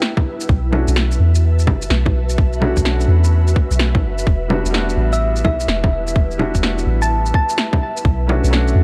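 Light, digital ambience surrounds this rainy, ghostly future garage fragment at 127 BPM in E dorian, where a tight, overdriven electronic kick and a cracking snare layered with bongos and shaker sit up front over a deep, round 808-style bass, while a muted upright piano pumps under analog delay beside an ethereal, detuned pad with phaser and ensemble chorus, and a tine-like, warbling thumb-piano pluck carries the melody from 5.1 to 7.7 seconds over the Em7 chord of a Bm7 to Em7 progression.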